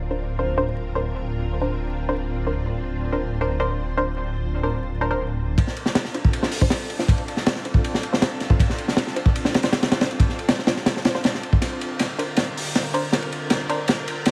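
Drum and bass in a jungle vein at 159 BPM in D minor, this nostalgic, atmospheric excerpt from a longer piece opens with silky, vintage string-machine chords held over a thick, beating detuned saw bass with tube saturation, while muted, deep dub chord stabs with chorus and dub echo undergo a filter sweep. At 5.6 seconds the bass drops out and a gritty, punchy breakbeat kit comes in up front beneath the continuing strings and stabs, with a high-tuned snare, dark cymbals and a rolled-off top, as the track builds toward a drum fill starting at 11.6 seconds. Light studio reverb and a layer of vinyl crackle give the whole passage a dusty, nostalgic patina.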